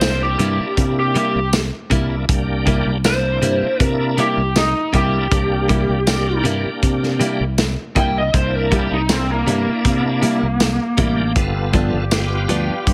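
Laid-back and rollicking, this straight-eighth soul blues excerpt rides a gritty, saturated breakbeat kit and a punchy fingered bass under an overdriven, lo-fi lead guitar solo, while a bright tonewheel organ shouts through chorus vibrato and a slow rotary speaker, a clean, compressed direct guitar adds stabs, and a distant horn section enters with sustained chords at 11.4 seconds as the harmony moves from C7 to G7, all set in light studio reverb.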